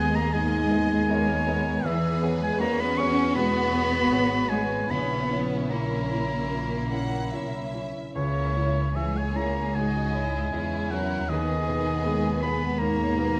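A clear solo oboe sits up front in this sorrowful, longing film-score passage, carrying a second line high above the orchestra with light vibrato. Beneath it, a violin section sings the melody smoothly and evenly from further back, while a second violin section plays a lower line with a focused, smooth top. Violas sit very quietly and close, a rich cello section and a woody double bass section hold the bass, and a polished grand piano with short sustain and a bright, ringing concert harp playing arpeggios fill out the background. The music moves in a rubato 4/4 at roughly 72-81 BPM in G# minor, tuned to A4 = 445 Hz, drifting through G#madd9/D#, E6, A#dim and C#m before returning to G#madd9/D#. A moderate scoring-stage reverb gives the lush ensemble an emotional, cinematic glow across this 13.4-second excerpt cut from a longer piece.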